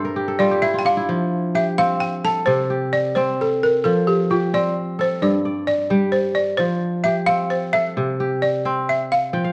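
In a flowing 12/8 at 87 BPM, counted in dotted quarters with a straight feel, this joyful West African traditional passage in F major opens with a short kora fill before the balafon enters at 0.4 seconds. The mellow, ringing, fingerpicked kora spins arpeggios up front across a span from G2 to G5, while the woody, buzzing balafon, played with rubber mallets and close-miked, carries a full, dry solo melody over chords moving between F, C and G. A moderate recital-hall reverb frames a dark production in this fragment cut from a longer piece, with a last kora fill at 9.3 seconds.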